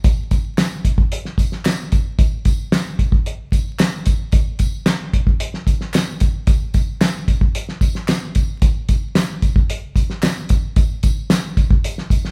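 Joyful and uplifting, this short soul excerpt rides a straight 4/4 groove from a cloth-damped drum kit whose thuddy kick is tight and whose snare is fat, the whole kit dark, dry and warm, its rolled-off top sitting up front in the mix. Behind it, tambourine, tube shaker and group handclaps add a compressed, saturated texture at a much lower level, running alongside the drums from start to finish. The sound is of a band playing live in one large studio room with moderate reverb and a layer of vinyl crackle.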